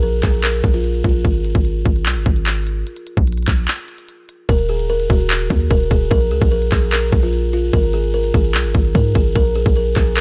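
Hip hop trap in Eb minor at 148 BPM with a half-time feel, this dark, hard-hitting excerpt sits in a digital ambience. An electronic trap kit of handclaps, crisp hi-hats and a hard-clipped kick punches up front beside a deep, boomy sine 808-style bass with a noise layer and a fast attack that decays, both running throughout. A buzzing, woody kalimba carries the melody through a low-pass filter and delay, sounding briefly at the start, dropping out for a break at 1.2 seconds, then returning at 4.5 seconds over Ebm and Bb5 chords.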